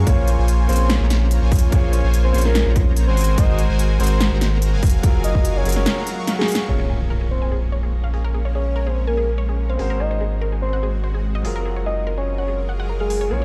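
Bittersweet and dreamy, this future bass passage, cut from a longer piece, moves at 145 BPM in a half-time feel in Bb minor, cycling through Bbm7, Ab9 and Gbmaj9. It opens on a drop where a hard-clipped electronic kick sits up front beside a deep, saturated sine sub bass, while a big-room dance kit adds a punchy snare, crisp hats and crash cymbal, overdriven and re-recorded in a large room with filtered hats, snare, cymbals and room. A clear concert grand piano with long sustain carries the accompaniment under a round, dark octave-layered synth lead with chorus, vibrato and delay, and a smooth, detuned supersaw riff with phaser and low-pass filter plays until 6.7 seconds. After a drum fill and band accent, an impact hits at 6.7 seconds as a filter sweep moves over the drums, and a lush, ring-modulated unison pluck takes up arpeggios with delay. From 7.7 seconds a shimmering, ethereal granular pad adds sustained chords with chorus and its own reverb, and sidechain pumping runs through the piano, supersaw, sub bass, lead, pad and pluck, with a stone room reverb on a big sound system giving the mix its loud, bare-room character.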